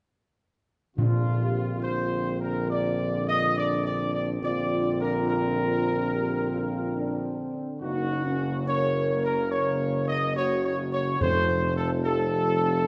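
This short classical brass passage, cut from a longer piece, sits in a wet scoring-stage reverb that lends it a spacious, ceremonial bloom. At a slow 71 BPM in Bb major, the mood is solemn and regal, with the harmony moving from Bbadd9 to Gb at 7.8 seconds and settling on F at 11.2 seconds. A mellow trumpet section carries the melody up front with light vibrato and a soft attack, while a close-miked, clear trombone section and a tight French horn section hold sustained chords in the background, both touched with gentle vibrato. Beneath them, a present, warm tuba anchors the bass line. Timpani struck with hard mallets on calf heads sound articulate, marking the opening moments and returning at 11.2 seconds to punctuate the close.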